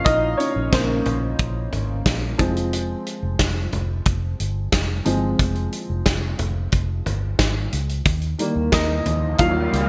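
Anthemic and warm, this piano-driven pop excerpt at 90 BPM in 4/4 features a woody, boxy upright piano with analog chorus taking the solo spotlight up front over Bbmadd9, Fm and Eb chords, supported by a dark, round, foam-muted fingered electric bass, a loose acoustic indie drum kit with a tight kick, medium-tuned snare, hi-hat and toms under gated reverb, and an electronic riser entering in the background at 9.1 seconds, all set in a moderate plate reverb with bright 1980s-style digital production.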